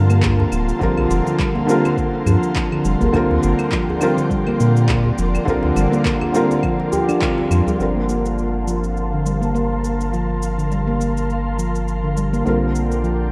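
A rough home-demo mix set in a moderate plate reverb gives this organic downtempo excerpt an unpolished, meditative warmth. It moves at 103 BPM in G minor with a gentle sixteenth-note swing, drifting between Gm11 and Bb69. A felt-muted upright piano plays soft, intimate accompaniment with audible action noise, pumping under sidechain and trailed by delay. Beside it, a close-miked handpan rings out bright, dry arpeggios of nitrided steel through a low-pass filter and delay, while a round, sine-like sub bass sits up front. An ethereal, warbling pad of detuned sawtooth and noise holds slow-attack chords high above, thickened by ensemble chorus, and from 7.8 seconds a filter sweep runs through it. Tape-toned electronic claves, shaker and handclaps and a deep electronic kick keep the pulse, alongside a tight, cracking djembe in the background and a barely audible quartz singing bowl, with a band accent at 7.2 seconds before the kick drops away and the bowl and djembe fall silent.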